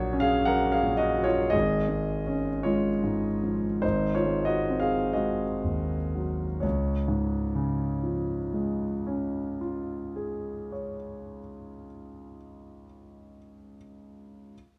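Rubato and unhurried in 4/4, this romantic nocturne for solo piano drifts with a dreamy, tender mood, easing into a slowdown over its first 6.6 seconds. A dark concert grand carries everything alone, sounding mellow and intimate, its deep bass and smooth tone placed up front with the audible noise of the action adding a vintage closeness. The harmony moves from Gb/Bb through Db/Ab and an Ab7 before settling on Db at 6.6 seconds, where a new section begins and runs to 12.3 seconds. The piano spans from Ab1 up to Gb5 across this short passage cut from a longer piece. Light reverb and a dusky, warm production wrap the instrument in a soft, hushed glow.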